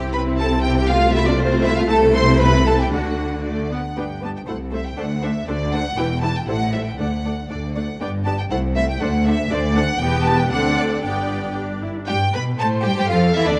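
Cheerful and lively, this quick classical-period string orchestra movement in G major at 119 BPM sets an up-front, smooth violin melody over a rich, lush second violin line, focused violas, expressive cellos and soft-attacked, distant double basses, all bowed with vibrato in a moderate scoring-stage reverb, the opening idea returning at 12.1 seconds in this excerpt cut from a longer piece.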